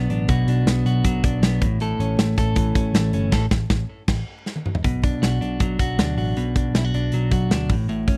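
The recording sounds dry and close, like a small 1970s-style studio room, with vinyl crackle running beneath the band. This brief cut from a longer jangly indie pop piece feels wistful and restless, moving in a straight four. A clean, compressed electric guitar sits up front, playing picked arpeggios through tape echo, while a dark, round, foam-muted bass holds the low end beneath it. An acoustic drum kit with a tight kick and a medium-tuned snare joins at 0.1 seconds, using hi-hat, crash cymbal and toms. The harmony moves from Bm to A, and the band hits accents together from 3.3 seconds, capped by a drum fill just before a new section begins at 4.8 seconds, where Bm returns.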